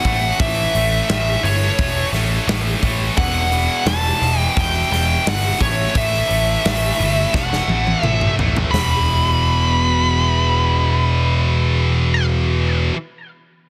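A picked, high-gain lead guitar carries the melody between C#5 and B5, its distorted tone warm and trailed by analog delay, in this angsty, dark stretch of quiet-loud alternative rock cut from a longer piece. Beneath it, a heavy, double-tracked rhythm guitar sits up front with a bright, distorted riff from E2 to A3, joined by a growly, overdriven picked bass holding low between E1 and A1. A big acoustic rock kit of hi-hat, punchy kick, medium-tuned snare and toms drives the straight 4/4 at 87 BPM in E dorian, moving through A, Emadd9 and A5. The drums roll through a fill from 7.3 to 8.7 seconds and stop at 8.9 seconds, as the music shifts to an E5 passage where guitars and bass carry on alone. Small room ambience surrounds the parts, and the master is dense and heavily limited in a modern style.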